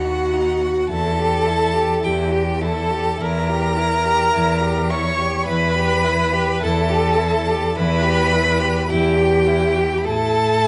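Classical in E minor, this serene, tender passage from a slow romantic string quartet movement moves at 52 BPM in 4/4 with a rubato feel, the first violin singing a focused, vibrato melody high above while the second violin plays a smooth, even, distant second line. The viola carries the accompaniment with expressive portamento from a distance, and the up-front cello anchors the bass with a focused tone and a smooth top. The rich bowed instruments sit in a moderate recital-hall reverb, and the harmony settles from B/D# onto E minor at 0.9 seconds before reaching A5 at 10.0 seconds.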